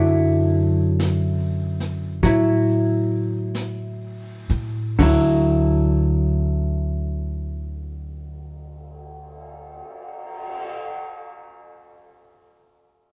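Late-night and tender, this jazz ballad excerpt moves at a slow 40-53 BPM in D major with a swung eighth-note feel, easing down in tempo over its first 5 seconds. A vintage hollow-body electric guitar sits up front with a dark, clean, compressed tone, its picked accompaniment opening on a Dadd9 chord. Beneath it, a pizzicato upright bass with steel strings gives a woody, thumpy low end, also placed close in the mix. A brushed jazz drum kit enters at 1.0 seconds, softer and further back, with shadowy cymbals, a medium-tuned snare, a boomy kick, hi-hat, crash and a cymbal swell in a small, natural-sounding room. Light reverb and a mellow, rolled-off top end give the whole recording an intimate, after-hours glow.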